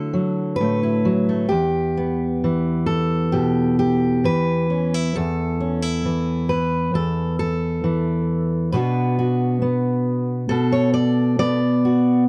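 A fingerpicked steel-string dreadnought acoustic guitar carries this brief folk excerpt alone, its dark, full-bodied tone sitting up front in a dry room and ranging from E2 to D5. At a loose, rubato 67 BPM in 4/4 and E minor, the mood is haunting and reflective, opening on Dadd9 before settling at 1.5 seconds into a longer passage that moves from Em through A5/E to Bm at 8.7 seconds.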